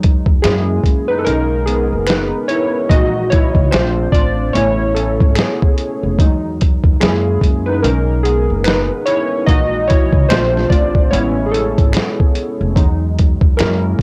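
Lo-fi hip hop at 73 BPM in B major, nostalgic and dreamy, with a lazy 16th-note swing, cut from a longer piece. Warbly, detuned synth keys with chorus and cassette-tape wobble carry a solo over lush ninth and thirteenth chords, supported by a woody, dark pizzicato upright bass on gut strings. A muffled, pitched-down sampler drum kit with a thumpy kick sits up front, and a close, human finger snap enters at 0.4 seconds, all set in light reverb with the character of a home cassette recording.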